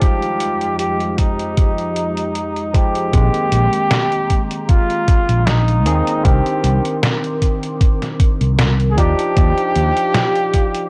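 A slow 77 BPM groove in 4/4 with a light swing on the sixteenths sets up this nostalgic, woozy vaporwave fragment, cut from a longer piece. A thumpy electronic kick sits up front, joined by a detuned 8-bit drum machine supplying hi-hat and a medium-tuned snare, both re-recorded in a small room. Over chords moving from Fm9 through Bb9sus4 and Cm9 to Ebmaj9, a barky tine electric piano comps brightly with subtle chorus and tape echo, while a warbling, detuned pad with slow attack and long release hovers in the background. A round, dark fretless bass enters at 3.1 seconds and drops out at 9.9 seconds. The flugelhorn carries the melody with a soft attack and vibrato in a jazz style, roomy yet distant, roughened by 12-bit sampler grit and tape echo. The whole recording is dry and gritty, with a cassette-tape haze.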